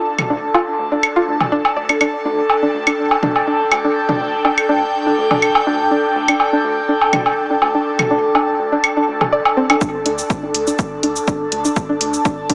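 A straight 4/4 pulse at 123 BPM drives this cool, clinical minimal techno, which opens on an airy, breathy pad up front, shimmering with chorus and phaser and pumping against the sidechain, as electronic toms and woodblock thrown into dub echo join it. A twangy, string-like resonator pluck riff carries vintage 12-bit sampler grit and dub echo, while a rubbery, bouncy square bass sits dark and saturated in the background. At 9.8 s the toms and woodblock stop as a punchy electronic kick and tape-warm shaker and hi-hat arrive to begin a build-up, with the mix set in a lush hall reverb and a small-speaker sound.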